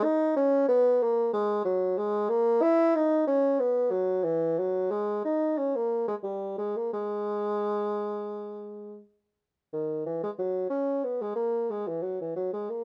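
Flowing and radiant, this brief passage from a longer baroque-style classical fantasia gives the stage entirely to a lone bassoon, played with a free, rubato feel over a 4/4 pulse. The bassoon's dark, roomy tone carries a light vibrato and sits up front in a touch of reverb, with a softened top end. Its opening idea returns at 9.7 seconds and carries through to the close at 12.8 seconds.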